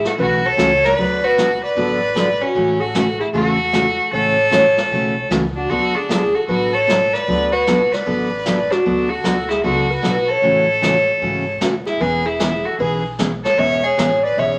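A round, pure sine lead with chorus, phaser and vibrato carries the melody over a biting, earthy fiddle second line, a woody pizzicato upright bass and a brushed jazz kit from the start, with a full-bodied picked steel-string acoustic guitar joining at 0.2 seconds in this cheerful, swinging western swing excerpt at 152 BPM in A major, moving through sixth chords under a wet studio reverb and vinyl crackle.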